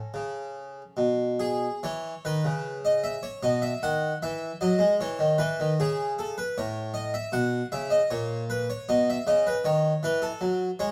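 Classical baroque-style suite movement for solo harpsichord, heard in a brief cut from a longer piece, with a serene, dance-like mood in 3/4 at about 77 BPM, played with rubato. The harpsichord is the only part, sounding from the start to 10.9 seconds across a range from A2 to F#5, tuned slightly below modern pitch at A4 = 437 Hz. Its tone is plucked, full and French in style, with two sets of strings, and it is close-miked and placed up front, so the instrument itself sounds dry even as a moderate stone-room reverb of about 1.1 seconds surrounds it. The harmony moves from A through C#m9, B and E, with brief passages free of chords around 5.8 and 8.1 seconds before returning to A and settling on B. The opening phrase restates itself from 1.8 seconds, giving the passage a poised, gently swaying character.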